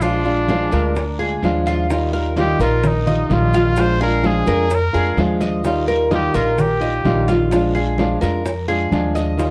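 A bright, punchy trumpet with pop-style vibrato leads this sunny Cuban son and guajira piece at 128 BPM in Eb major, soloing from 1.9 s until it drops out at 7.3 s, over up-front fingerpicked classical nylon-string guitar, metallic double-stringed tres arpeggios, a woody, dark, thumpy pizzicato upright bass, very quiet thick-skinned congas and round low-tuned bongos, and raspy guiro and grainy maracas in the background, with light reverb and the warbly pitch drift of worn cassette tape.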